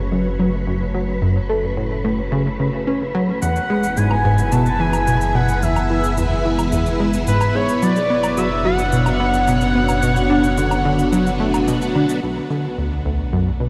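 A punchy, funky plucky analog bass riff with tape echo drives this hypnotic, mysterious stretch of sequencer-driven ambient space music at 109 BPM, set over a lush string machine fading in on sustained chords, a deep, round analog bass and an airy, breathy wind-like noise texture in the background, while a shimmering, warbling pulse-width lead with vibrato and portamento carries the melody from 3.4 to 11.6 seconds alongside dry, overdriven cabasa and woodblock, all soaked in a dreamy, huge reverb.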